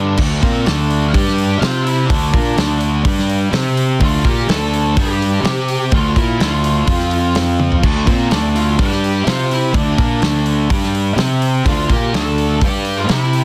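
Three guitars and a fuzzed bass strike up together at the very start of this short excerpt of quiet-loud alternative rock, with the drum kit joining at 0.2 seconds. The mood is dark and cathartic, driven at 126 BPM in a straight 4/4 feel and centred on D minor, cycling through D minor, G5 and C5 with a brief turn to F5. An octave-fuzz lead guitar carries the melody with a shadowy, distorted tone colored by analog delay, while a biting overdriven guitar and a thick fuzz guitar, the latter sitting in the background, both play the riff. Up front, a bright, growly fingered bass carries an overdriven fuzz tone, and a loose acoustic kit with a punchy kick, a medium-tuned snare and a rolled-off top adds crash, hi-hat, kick, snare and toms, with a drum fill at 7.6 seconds. The sound is dry, with little reverb, and the master is dense and heavily limited in a modern style.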